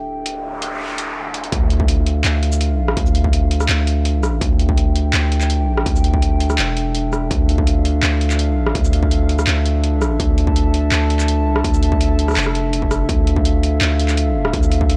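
Half-time drum and bass grooves with tense, cinematic weight in this excerpt, as a noise sweep rushes into the drop at 1.5 seconds, where a distorted electronic kick joins a layered kit of handclaps, metallic hi-hats, rim clicks and shaker over a deep, mellow 808-style bass held up front and a moody, detuned analog pad whose slow, sustained chords carry chorus, 12-bit sampler grit and sidechain pumping, all set in a dry, gritty cassette-tape sound touched by light reverb.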